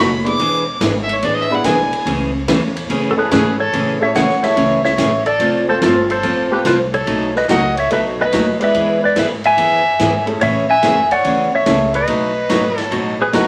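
A swung eighth-note feel at 144 BPM in 4/4 drives this cheerful western swing tune in A major, cut from a longer piece. The fiddle opens with a smooth, lightly vibrato-touched bowed solo that runs until 3.7 seconds, while a full-bodied picked dreadnought acoustic guitar and a clear, slightly detuned upright piano fill in the accompaniment. Beneath them, a pizzicato upright bass gives a dark, thumpy pulse, and a natural-sounding big-band drum kit swings on hi-hat, ride cymbal and a medium-tuned snare. At 3.1 seconds a clean, twangy lap steel guitar slides in up front with the lead melody, bright and compressed, as the chords move through E7, Amaj7, F and B7. A small, wet room reverb and a layer of vinyl crackle give the whole performance a vintage, old-record feel.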